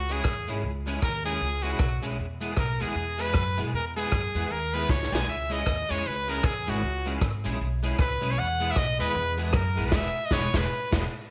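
A brilliant, forceful trumpet solo with vibrato, scooped notes and slapback echo and a woody pizzicato upright bass with tube saturation open this energetic, mischievous ska excerpt at 155 BPM in C# dorian with a swung feel, joined by a twangy, slightly broken-up fingered electric guitar with ensemble chorus and slapback echo, and a roomy, swinging big-band drum kit with a boomy kick, hi-hat, rim click, snare and crash cymbal. The harmony moves between C#m and E, with a drum fill at 4.9 seconds and a band accent from 9.9 seconds, all in light reverb.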